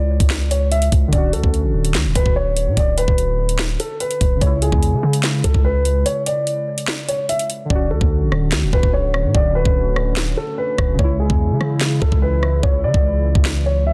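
Drill-style hip hop in a half-time feel, this menacing, cold fragment is cut from a longer piece. A dark, boxy concert grand carries the melody through the whole passage, its action noise audible under a low-pass filter and tape echo, while warbling lo-fi synth keys with a nostalgic, triangle-and-sawtooth tone and chorus fill in the accompaniment beneath it. A deep, sine-like 808-style bass with a fast attack and long decay sits underneath, and the electronic drill kit stays up front with a knocking kick, sharp snare, rim clicks, handclaps and metallic hi-hats. The harmony moves between C#m and Dmaj7, and a break arrives at 6.1 seconds. After 7.7 seconds the hi-hats drop out, and at 8.5 seconds a detuned analog pad with a slow attack, sub octave and chorus rises quietly in the background. The mix is dense and heavily limited with light reverb, giving a modern sheen.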